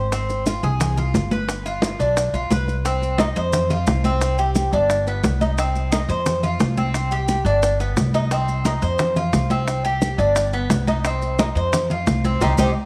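Light reverb and small-room ambience frame this danceable, nostalgic Cuban son and guajira passage. Up front, a metallic, double-strung Cuban tres picks arpeggios over a woody, thumpy pizzicato upright bass, while round, low-tuned bongos, thick-skinned vintage congas and grainy, mellow maracas fill out the percussion until a band accent lands at 12.4 seconds.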